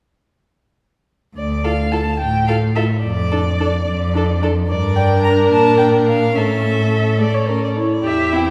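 A rich, focused first violin carries the melody over a close, up-front cello bass from 1.4 s, joined at 1.6 s by a smooth-topped second violin and an even, distant viola, all bowed with vibrato, as this urgent, restless, quick classical-period string quartet movement in D minor moves at 72 BPM in 6/8 through Dm, Dm/F, Gm and A, heard from further back in a wet scoring-stage reverb.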